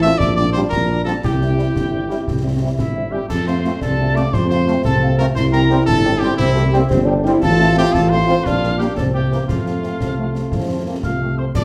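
A smooth-topped, up-front tuba anchors this rousing, proud military-style march for wind band, a short cut from a longer piece in F major, moving in 6/8 at 116 BPM counted in dotted quarters with a straight feel. Above it, a solo cornet carries the melody in a classical style. A crisp, pure piccolo with vibrato and lifted highs floats an expressive second line high over the band, while a distant, roomy euphonium adds another second line in its middle register. Tight horn and trombone sections with light vibrato sit in the background, the horns supplying accompaniment and the trombones holding sustained chords. Concert snare, bass drum and clash cymbals with dark cymbals bring an acoustic, live-room sound, and the harmony moves from Gm7/Bb through C and F before settling from C7 onto F at 9.5 seconds. The full band plays together for about 11.6 seconds, heard from further back in a large studio with wet reverb.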